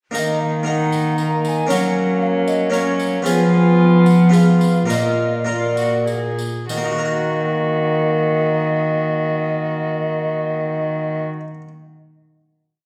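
In a straight triple metre, this short, courtly yet rustic renaissance-style consort dance sets an airy, chiffy alto recorder melody with vibrato over a reedy gut-string viola that answers at phrase ends, a brilliant plucked harpsichord with rolled chords, a rich, up-front bowed cello bass, soft-attack clear trombone chords and a jingly tambourine dance rhythm that stops at 7.0 seconds, the dance slowing from 2.5 seconds into a final chord at 6.7 seconds in a reverberant recital hall heard from further back.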